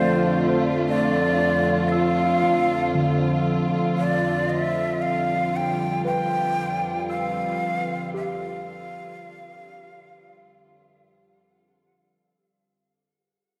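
A breathy, bright shakuhachi carries the melody up front. Its end-blown bamboo tone has lifted highs and vibrato, trails through analog delay, and falls away at 11.3 s. Beneath it, an evolving wavetable pad holds sustained chords, prominent in the mix, with a morphing, warbling vintage sound that is full-bodied, rounded by chorus and its own reverb. Muted, felt-like synth keys play soft, dark, intimate arpeggios with chorus and delay, while a studio violin section adds a lush, bowed ensemble texture on F4 with expressive vibrato. This weightless, peaceful ambient piece moves at 58 BPM in 4/4 over a Dm/F chord, tuned to A4 = 439 Hz. The mix is soaked in wet hall reverb for a dreamy feel, and this passage, cut from a longer piece, fades out from 1.2 s to its close at 12.4 s.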